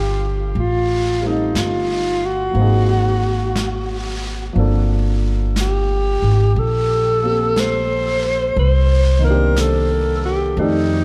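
Swung eighths at a slow 60 BPM in 4/4 carry this romantic, tender jazz ballad, cut from a longer piece. The upright bass sits up front with a woody, growly pizzicato tone on steel strings, while a vintage brush drum kit enters at 0.6 s with brushed snare and hi-hat, sounding warm and rolled-off at the top from a studio room. A dark baby grand piano provides mellow, natural accompaniment through a harmony that moves from Dm7 to Am7b5, Ab9, Gm11 and finally Cm9. Over this, a smooth alto saxophone carries the melody as a solo voice with vibrato and a touch of delay, placed up front in the mix. Everything floats in a moderate church reverb, giving the mix a dreamy, reverb-soaked glow.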